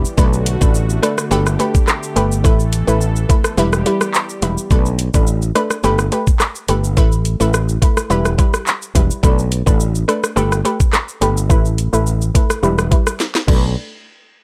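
A growly, punchy fretless electric bass sits up front in this sultry, hypnotic dancehall groove at 106 BPM in B minor, cut from a longer piece. An island pop drum kit drives it with a knocking kick, sharp snare, metallic hi-hats, rim clicks, handclaps, shaker and crash cymbal, closing on a drum fill from 13.2 seconds. A round, detuned analog pluck with a sawtooth and square-wave tone and a noise layer carries the accompaniment, pumping through sidechain compression, chorus and a low-pass filter, then takes on a filter sweep from 4.7 seconds. A smooth, warbling vintage pad holds sustained chords with slow attack and subtle chorus until 4.7 seconds, just after a brief break. The harmony cycles through Bm7, Gadd9, Asus2 and Em, and the dry, gritty hardware recording carries little reverb.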